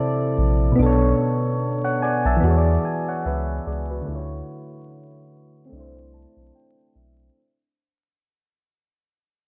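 A lightly swung 4/4 groove at 73 BPM sets a melancholic, hazy lo-fi hip hop mood, with soft, airy electric-piano-like synth keys up front, thickened by chorus and a sub octave and shaped by a filter sweep across the whole fade-out, moving through C69, Bm7, E7 and Dmaj7. A deep, dark analog bass with transformer saturation enters at 0.4 s. Light reverb, warbling worn tape and vinyl crackle color the sound throughout, and the keys play a fill from 5.7 s in this brief cut from a longer piece.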